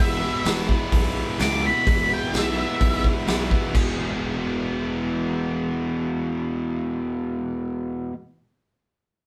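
An octave-fuzz lead guitar tears through a dark, picked solo in E major from the start until 3.0 seconds, opening this rowdy, swaggering garage rock excerpt at 128 BPM in a straight 4/4. Beneath it, a biting, double-tracked overdriven guitar pounds out an up-front riff and a round, dark overdriven picked bass holds the low end throughout, while a raw, punchy drum kit with a medium-tuned snare, hi-hat, kick and splash cymbal comes in at 0.5 seconds and drops out at 3.9 seconds. The band sounds like it is playing live in one small room, with the drums gritty, saturated and pumping against a bright stone-room ambience and a rolled-off top.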